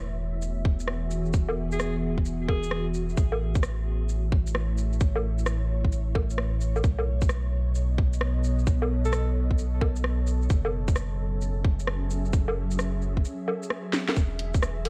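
An ethereal, detuned pad with ensemble chorus and sidechain pumping opens alongside a deep, round sub bass in this nocturnal, rainy future garage piece, soon joined by a swung garage kit with a cracking overdriven snare, hi-hat, rim click, shaker and woodblock and a tight, up-front electronic kick, while a breathy alto saxophone with vibrato and tape echo drifts in briefly at 1.7 seconds and again at 9.0 seconds before a drum fill at 13.9 seconds, all set in light reverb with a cassette-tape character.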